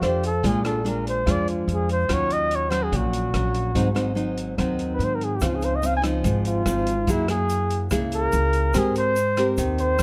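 A straight 4/4 bossa nova groove at 144 BPM comes from a dark, smooth jazz drum kit with a boomy kick, hi-hat and rim click, alongside a woody, thumpy pizzicato upright bass and an up-front, full-bodied fingerpicked nylon-string guitar. Over this relaxed, breezy bed, the flugelhorn plays a soloing melody with vibrato and scooped notes, its tone warm and smooth-topped, moving through chords from Bb7 and Ebm9 to Dbmaj9 and Abmaj9. A grainy, bright egg shaker slips in quietly in the background at 5.4 s, and the dry sound carries little reverb in this excerpt from a longer piece, tuned to A4 = 436 Hz.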